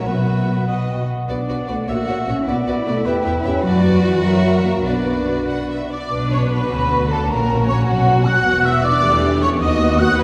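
Dark, sustained French horn chords underpin this stormy, urgent excerpt from a quick classical-period movement in B minor. It moves in a rubato 6/8 at roughly 94-105 BPM, with a pure, mellow flute section riding high above. A clear, intense violin section carries the melody, shadowed by a soft, sul tasto second violin line in the background and a cor anglais solo that drops out at 5.9 s. Smooth violas accompany over rich cellos with expressive portamento and close, bowed double basses, all heard from far back in a reverberant concert hall, with some lossy compression artefacts.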